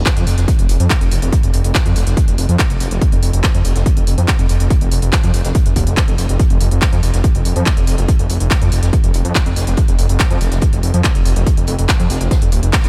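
A straight 4/4 pulse at 142 BPM drives this intense, relentless stretch of peak-time techno, cut from a longer piece, where a heavy, layered electronic kick sits beneath a thick, menacing detuned saw bass, pushed up front with a saturated, beating tone and sidechain pumping; a tape-warm techno kit adds handclaps and smooth, pumping hats, while a very quiet acoustic jazz kit contributes natural hi-hat and a medium-tuned snare in a dry mix that closes on a band accent at 12.7 seconds.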